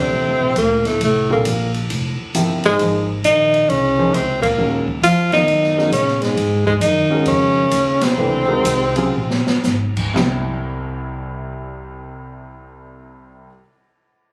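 Captured on a phone in a club room with light reverb, this spiritual, open modal jazz fragment in swung 4/4 sets a warm, up-front tenor saxophone melody full of vibrato and scooped notes over a dark, breathy bass clarinet second line, a slightly detuned vintage upright piano, a woody, thumpy pizzicato upright bass and a distant, roomy drum kit with dark cymbals, a high-tuned snare and a boomy kick, with band accents at 4.4 s and 7.9 s before the group slows into a drum fill and the horns and drums drop away, leaving piano and bass to finish.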